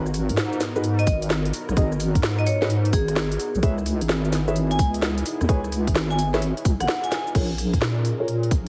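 A deep, wobbling bass sits up front throughout, built from detuned square and sine tones with chorus and compression, anchoring a bouncy yet moody two-step garage groove with a strong swing on the sixteenths. A tight, tape-warmed electronic kick enters at 1.1 seconds beneath a layered garage kit of cracking snare, crisp hi-hats, rim clicks, cabasa and crash cymbal, both re-recorded in a large room. A dark, boxy grand piano plays stabs through a low-pass filter and tape echo, while a bright, metallic vibraphone struck with hard mallets rings out the melody, also trailing tape echo. Behind them, a smooth sawtooth-and-triangle analog pad with a sub octave holds sustained chords in the background, with chorus and sidechain pumping, moving from Abm7 to Dbm7 and then Bbm7. A drum fill at 7.1 seconds leads into a short closing section where a filter sweep runs over the piano, and the whole excerpt has a heavily compressed radio character dusted with vinyl crackle.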